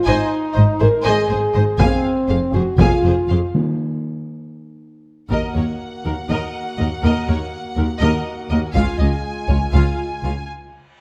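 Dark and dramatic, this epic orchestral film-score excerpt in Eb dorian drives at 242 BPM in 7/8, with a lush, vibrato-rich violin section carrying the melody over a second violin line, expressive portamento violas, focused cellos and rich, smooth double basses, while a clear, up-front French horn section holds sustained chords, vintage band-limited taiko drums struck with hard sticks enter at 1.8 seconds, articulate hard-mallet timpani sound during a break from 3.5 to 4.3 seconds, and a huge, bright reverse cymbal rises at 10.7 seconds, all set in a moderate scoring-stage reverb.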